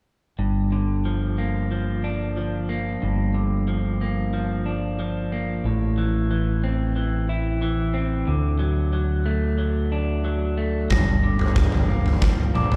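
In a straight 4/4 at 91 BPM, this cathartic, melancholic post-rock passage in G dorian is cut from a longer piece. From 0.4 seconds, an electric guitar through a small old amp picks twangy, slightly broken-up arpeggios up front, moving through Gm7, Am and D. Beneath it, a growling fingered electric bass sits equally close, its overdriven tone round and punchy. At 10.9 seconds, as the harmony returns to Gm7, a huge arena drum kit arrives with a punchy kick and toms in a pumping hall sound, while a glockenspiel with rubber mallets adds mellow, bell-like arpeggios in the background. A wet church reverb with a long 3.2-second tail gives the passage a vast, echoing space.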